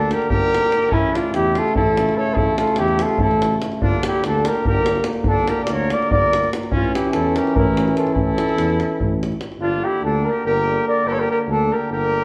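A brisk 7/8 pulse at 291 eighths per minute drives this bittersweet, virtuosic Balkan brass band passage, cut from a longer piece and tuned to A4 = 436 Hz, with a deep, up-front davul sounding until 9.6 s as the harmony moves between Gm and A. The mellow flugelhorn carries the melody up front with light vibrato, a clear trumpet adds a second line with the same distant, roomy quality, and a present French horn and a very quiet, smooth-topped trombone fill the accompaniment over a soft-attacked tuba bass. Every horn plays in a classical style, and the band sounds live in one room, bathed in a wet large-studio reverb.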